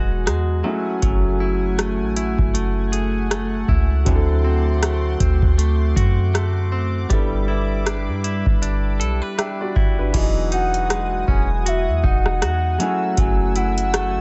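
An echo-heavy digital ambience surrounds this smooth, tender contemporary R&B passage, cut from a longer piece, with the top end of the mix rolled off. A clear, intimate baby grand piano, its action noise audible and its notes ringing with long sustain, plays accompaniment through analog delay, while a shimmering, retro pulse-width pad holds sustained chords with sidechain pumping. A bright, twangy clean electric guitar, recorded direct, picks arpeggios through its own analog delay. Up front, a deep, boomy 808-style sine bass joins a booming analog drum machine with a deep kick, metallic hats, rim clicks and crash cymbal over a lightly swung sixteenth-note feel, as the harmony moves from Emaj9 through F#m9, D7 and G6. At 10.2 s a round, octave-layered synth lead takes the melody, its sub-octave body coloured with chorus, vibrato and delay.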